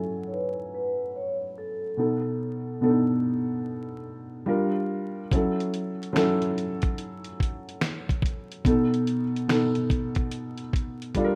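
This nostalgic, reflective lo-fi hip hop excerpt opens on a felt-muted upright piano and a soft-mallet vibraphone, both filtered and dusted with vinyl crackle. The piano sits up front with a dark, boxy tone and audible action noise, comping through mellow seventh chords. The vibraphone's airy, ringing melody carries a slow motor vibrato before it drops out at 4.0 seconds. At 5.3 seconds a sampler-style soul drum kit arrives with gritty, compressed hits, a thumpy kick, a fat snare, hi-hat and finger snaps, all riding a lazy swing on the sixteenths. A filter sweep runs through the whole passage, and the piano slips in a short fill at 10.7 seconds just ahead of a closing drum fill. Light small-room reverb and a rough home-demo mix give it an intimate, lived-in feel.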